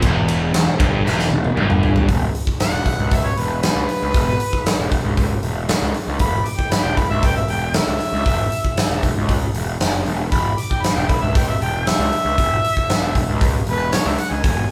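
A gritty, driving blues rock and southern rock power trio cut from a longer piece opens at 117 BPM in a straight 4/4: a bright, double-tracked stack guitar riff with overdrive and harmonic tremolo sits low over Em, alongside a growly fuzz bass and a huge, punchy arena drum kit whose fill from 1.1 to 2.1 s closes the opening bars. The guitar drops out at 2.1 s as the harmony moves to E5, and at 2.6 s a distant, roomy harmonica with vibrato and overdrive takes a jazz-style solo over the bass and drums. The band sounds like it's playing live in one room with light reverb, the drums natural and up front and the snare medium-tuned.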